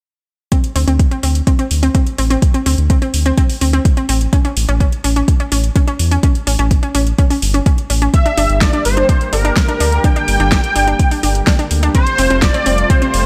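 Opening at 0.5 seconds, a detuned analog pluck spins bright, chorused arpeggios through digital delay over a deep, up-front electronic kick and a deep house kit of fat snare and metallic hats. At 0.8 seconds a round analog bass with tube saturation joins, pumping to the sidechain along with the pluck at 126 BPM in D minor in this emotional, expansive progressive house excerpt. At 8.1 seconds the harmony moves to G minor as a bold, wave-folded unison lead with vibrato takes the melody up front, while a lush, warbling pad of slow-attack sustained chords sits in the background. The chords travel from D5 to A, G minor and Fadd9, set in light reverb and digital ambience.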